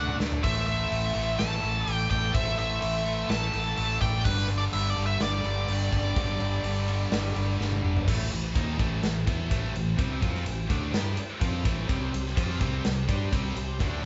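Heavy and aggressive, this hard rock passage drives along at 126 BPM in a straight 4/4 and is cut from a longer piece. Up front, a big acoustic drum kit with a punchy kick, medium-tuned snare and bright cymbals plays in a big room, and a growly, amped fingered bass sits beside it. Behind them, three picked riff guitars stack up: a cranked stack guitar, a double-tracked high-gain guitar and an overdriven guitar carrying harmonic tremolo. A very quiet, fat and clean tonewheel organ sustains chords through a slow rotary speaker. Over this, a nasal lead guitar with a parked wah carries the melody, shadowed in the background by a dark octave-fuzz lead on a second line; both leads stop at 7.6 s, where a drum fill leads into a new section in A minor at 8.1 s that runs to 14.1 s. The sound is a band playing live in one room with moderate studio reverb and a dull top end.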